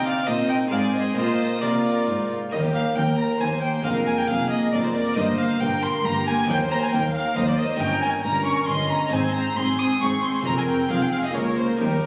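A festive, lively baroque-style concerto movement in 3/4 at 136 BPM opens in Eb major with an up-front solo violin of airy bow and nasal gut-string tone singing over two reedy violin sections, a dark viola section, a round Italian-style harpsichord and a cello section in the background, joined by a rich double bass section at 2.5 s before the music turns toward Ab major at 7.8 s, all heard in a wet concert hall captured on a phone in the room.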